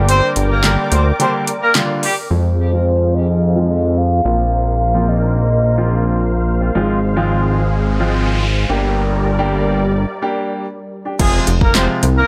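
A fat, thick, detuned sawtooth bass sits up front through this driving, confident dance-pop excerpt in F dorian at 108 BPM, tuned slightly flat to A4 = 437 Hz and cut from a longer piece. Overdriven deep house drums with a deep kick, punchy snare, metallic hats, handclaps and crash open the passage beside a distant, roomy horn section carrying the melody through a digital delay, and both return for the drop at 11.2 seconds. In between, a hollow, woody synth lead with chorus, vibrato and delay takes over the tune while a filter sweep runs beneath it. A polished baby grand piano and a mellow, evolving supersaw pad hold the harmony, both low-pass filtered and pumping with the sidechain, moving from Gm through Fm, Bbsus2 and Fm/Ab and back. A faint noise sweep enters at 7.2 seconds, and the whole mix sits in a digital ambience.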